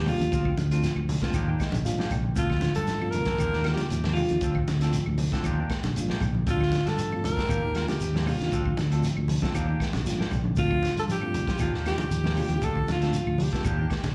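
A crunchy, gritty breakbeat kit with a tight kick drives a straight 117 BPM afrobeat groove in 4/4, backed by woody claves, bright hard-hand congas and grainy shekere in the background, while a fingered electric bass anchors the driving, funky vamp on Dm7 and Ebmaj9, a dark, very quiet electric guitar plays arpeggios, a twangy picked guitar adds stabs, a reedy electric piano with fast tremolo comps behind and fills from 1.3 to 2.4 s, and a clear alto saxophone with vibrato carries the melody up front, the whole cut from a longer piece and heard as a live gig through a club PA with moderate reverb.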